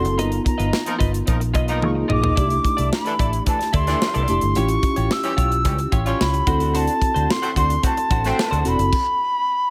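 An airy, distant silver concert flute with vibrato and tongued notes carries the melody in this polished 1980s jazz-funk pop excerpt at 110 BPM, its urban, nocturnal mood set by a mellow tine electric piano with lush chorus, a picked, compressed clean electric guitar riff with analog chorus, a dark, round, foam-muted fingered bass and a dry, tight funk drum kit up front with a fill at 1.8 seconds, while a smooth-topped horn section in octave doubling enters at 0.9 seconds over chords moving from G7alt through C69 to D7, all within light reverb and studio ambience.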